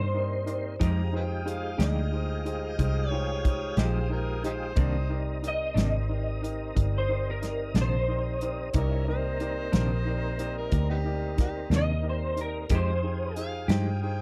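Brooding and smoky, this slow blues excerpt in C minor moves at 60 BPM in 12/8, with a dark, slightly broken-up electric guitar through a small old amp carrying the melody under ensemble chorus, a gritty overdriven harmonica with tongue slaps and scooped notes entering at 0.8 seconds as a second line, a boxy grand piano and a clean semi-hollow guitar with tremolo in support, a tonewheel organ holding chords through chorus vibrato and a slow rotary speaker, and a round, foam-muted bass and a punchy, airy drum kit up front, set in a dry, close 1970s-style small room.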